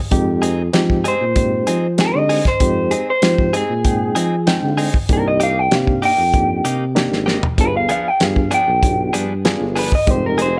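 An electric guitar played through a small old amp carries the melody up front from 1.1 seconds, its picked tone slightly broken-up and lo-fi. Beneath it, a reedy electric piano with fast tremolo, heard through its built-in speakers, supplies the accompaniment, while a mellow tuba with light vibrato holds down the bass in a close-miked jazz style. A direct-recorded clean electric guitar adds compressed, picked stabs from 0.4 seconds and takes a solo role across the passage. The soul drum kit also sits up front, with a fat snare, tight kick and a gritty, saturated sound with a rolled-off top, captured in a tight booth with a pumping room, and a short fill arrives at 7.3 seconds. This smoky, soulful straight-eighth soul blues moves from Fm7 through Cm7 and G7b9 back to Fm7 in a small room reverb, and it is cut from a longer piece.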